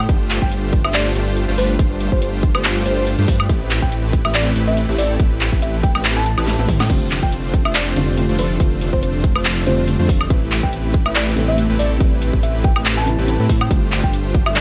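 Emotional and bittersweet, this future bass excerpt at 141 BPM in A minor rides a swung half-time feel, with huge detuned supersaw chords and a thick, saturated detuned saw bass pumping under a hard-clipped electronic kick and a dubstep kit of huge snare, metallic hats, claps, toms, woodblock and crash, while a sparkling, bell-like FM electric piano melody with chorus and tape echo sits in the background, joined at 6.9 seconds by a soft, felt-muted upright piano with audible action noise after a brief drum fill, all in a digital ambience.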